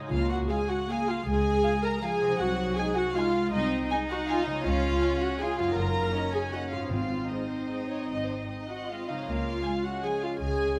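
An up-front, intimate viola section carries the accompaniment in this festive, elegant orchestral ballroom waltz in Db major, cut from a longer piece and moving in a rubato 3/4 at 144-174 BPM. A woody violin section sings the melody with vibrato, while a second violin section floats a pure, soft-edged line above it; cellos and a dark double bass section anchor the bass, and mellow French horns hold tight sustained chords in the background beside ringing, fingerpicked harp arpeggios. Timpani with calf heads strike at 0.1 and 6.9 seconds, and a moderate scoring-stage reverb surrounds the ensemble.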